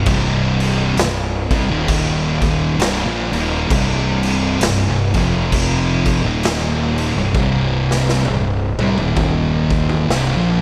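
A slow 4/4 at 66 BPM with swung eighths carries this ominous, hypnotic stoner and doom metal excerpt in C minor, where two thick, picked fuzz guitars sit in the background grinding a low riff through C5, Eb5 and F5 chords, a growly, overdriven fingered fuzz bass adds punch beneath them, and an up-front raw garage drum kit of punchy kick, medium-tuned snare, toms and crash, gritty and saturated with a rolled-off top in a bright, pumping stone room, breaks into a fill from 7.3 to 10.6 seconds, all set in light reverb.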